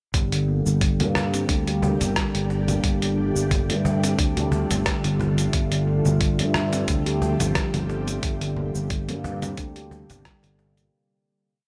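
Warm and meditative, this short organic downtempo piece in G minor moves at 89 BPM with a gentle 16th-note swing, as a ringing stainless-steel handpan plays a repeating arpeggio through low-pass filter and delay over a growly, bright fretless bass, a gritty sampler-style kit of congas, hi-hat, rim click and shaker, a thumpy electronic kick and a snappy cajon, while an ethereal detuned pad with chorus, phaser and sidechain pumping enters at 1.4 seconds in the background, the chords shifting from Gm to Dm7/G to C5/G before a fade-out from 7.3 seconds.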